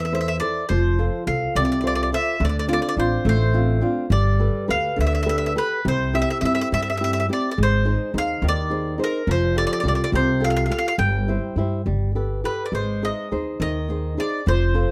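Close, detailed microphones and a light reverb give this short cut from a longer Italian folk serenade an intimate, up-front sound. The mood is sunny and lively, moving at 70 BPM in 6/8 with a straight feel. A picked, double-strung mandolin carries the melody in a warm, woody upper register, while a fingerpicked flamenco guitar supplies a warm accompaniment beneath it. Pizzicato upright bass, dark and growly with a thumpy attack, anchors the low end as the slightly loudest of the three. All three parts play together from the start to the end at about 14.9 seconds, moving through a chord progression that opens on Am and F and later turns through Ab and C/G before landing back on Ab.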